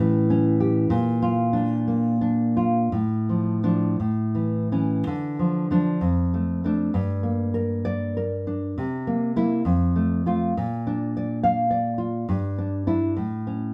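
Moving in a rubato 6/8 at 54-74 BPM counted in dotted quarters, this romantic solo classical guitar piece in D minor unfolds with a wistful, melancholic air. A single nylon-string guitar carries everything, its dark, full-bodied, thumb-plucked tone sitting up front and reaching from F2 to F5. The opening section, up to 5.1 seconds, moves from A7 through Bb and Dm/A before settling on A, and the second section then passes through Dm, Gm, C7, F and Bb to close on Em7/G and A at 13.2 seconds. A moderate studio reverb gives the instrument a gentle sense of room around its deep classical voice. The recording is a short cut from a longer piece, ending after 13.7 seconds.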